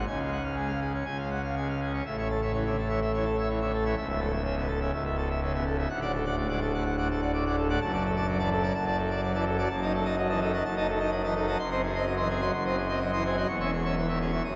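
A solo pipe organ opens on full organ, its bright mixtures giving a majestic, brilliant classical toccata in a steady, straight four-beat pulse and a romantic voicing that spans from deep pedal notes to high treble. The sound is heard from further back in a cathedral, with a long, wet reverb hanging around every chord. After a short opening passage, a new section begins at 2.1 s, and the harmony turns darker from 9.7 s in this fragment cut from a longer piece.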